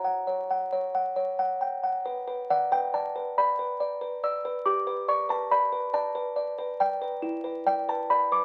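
Fragile and eerie, this short classical lullaby fragment unfolds in 6/8, carried entirely by a solo music box whose delicate, tinkling plucked tones sit up front with a mid-forward character from a large box. The melody ranges from E4 to E6 over a harmony that settles from F# onto B minor at 2.1 seconds, then moves through G and E5. A moderate studio reverb and the crackle of a very old 78 rpm record give the sound a haunted, faded patina.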